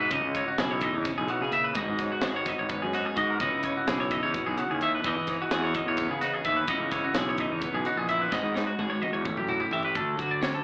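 Math rock and midwest emo in a bright, wistful 7/8, where a twangy electric guitar spins up-front arpeggios drenched in lush chorus and slapback echo over a bright twelve-string electric guitar's compressed accompaniment. A growly, fuzz-soaked fingered bass punches beneath them while a crisp fusion kit with a high-tuned snare and tight kick drives the groove, moving into a drum fill from 8.3 seconds as the chords move through C#m9, G#m7 and Emaj9 toward A7 and Dmaj7. The whole cut has the boxy, club-reverb feel of a live gig heard through a venue PA and an AM radio.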